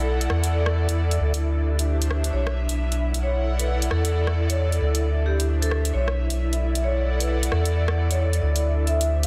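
A deep, round sub bass sits up front in this skippy, soulful two-step UK garage excerpt, holding sustained low notes in B minor at 133 BPM with a swung sixteenth-note feel. Around it, two pads fill the space: an ethereal, mellow pad of detuned chords with ensemble chorus and built-in reverb sits in the background under a filter sweep, while a breathy, warbling pad with a vintage noise layer and chorus adds soft texture. The electronic, layered garage kit comes in at 0.2 seconds, with warm hats, a rim click and a softly clipped snare set in studio reverb. At 2.3 seconds a metallic, ringing vibraphone played with medium mallets enters in the background, carrying the melody through tape echo. The harmony cycles through E9sus4, D9sus4 and Bm7, giving the dense, heavily limited mix a floating, unresolved glow.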